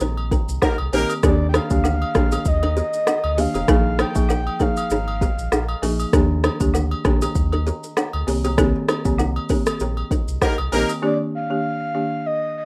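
Over a lightly swung afrobeats groove from an up-front electronic kit with a deep kick and metallic hats, a full sine-like sub bass, and agogo bells and woodblock, this romantic, joyful clip from a longer piece layers a buzzing kalimba riff with delay, dry rustic folk marimba accompaniment, and brief punchy horn phrases near 0.6 and 10.4 seconds around a breathy, flute-like synth lead with vibrato that returns at 11.0 seconds, all in a rough home-demo mix.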